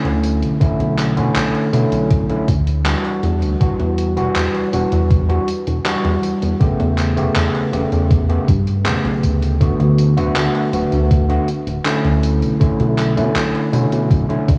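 A barky, overdriven tine electric piano sits up front through a combo amp, its gritty chords drenched in lush chorus and tape echo as they drift through Bm11, Em9, A9/E and D6 in this woozy, melancholic vaporwave excerpt. Beneath it, a glossy chorused synth bass blends pulse and sawtooth tones with a plucky, mellow sustain, while a gated 80s digital drum machine adds handclaps, hi-hat and tambourine coated in 12-bit sampler grit. A thumpy, overdriven electronic kick enters at 0.6 seconds, and the whole piece carries a cassette-tape haze with light digital ambience and small room reverb.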